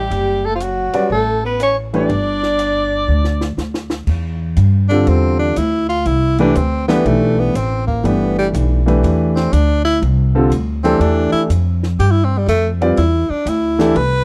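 Hypnotic and spiritual, this modal jazz excerpt swings at 121 BPM in 4/4, settling into C major from 4.1 seconds in a dry, close 1970s-style studio sound. A mellow, distant soprano saxophone with soft attack and scooped notes carries the melody until 3.6 seconds, beside a clear, present tenor saxophone, with vibrato on both horns, that then takes the solo after a drum fill. Underneath, a woody pizzicato upright bass sits up front, a warm concert grand piano with deep bass supplies accompaniment, and a compact cocktail drum kit with dark cymbals, a high-tuned snare and a punchy kick keeps time.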